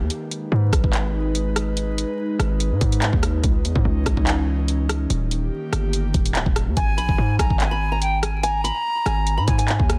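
A punchy, heavy 808 bass anchors this menacing, tense half-time drill excerpt, sitting up front beside a knocking electronic kit of handclaps, bright hi-hats, kick and rim clicks roughened by 12-bit sampler grit, while a breathy, mellow chorused pad holds chords until 6.8 s, when a small fingerpicked nylon-string guitar carries the melody and a distant, crisp silver concert flute adds a second line, both through digital delay, in a dry, dense, heavily limited mix dusted with vinyl crackle.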